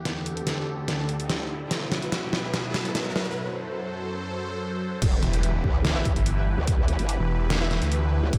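A growling, wobbling bass colored by chorus and overdrive enters at 5.0 s, joined at 5.2 s by a snarling, detuned sawtooth bass tearing in with heavy distortion and overdrive, both sitting up front in the low register. This short cut from a chaotic, heavy wobble dubstep track runs in E minor at 145 BPM with a half-time feel. It opens with a build-up: a lush supersaw pad holds sustained chords under a filter sweep, phaser, gritty 12-bit sampler character and sidechain pumping, while a dubstep kit with a deep snare, hi-hat and crash plays a fill and a riser sounds in the background. After a brief break, the drop lands at 5.0 s with a background impact and a punchy, layered electronic kick re-recorded in a large room, and the harmony arrives on E minor. A bold orchestra-hit-like synth stab appears in the distance at 6.0 s, softened by cassette tape coloring and diffuse ambient delay, and a light reverb surrounds the mix.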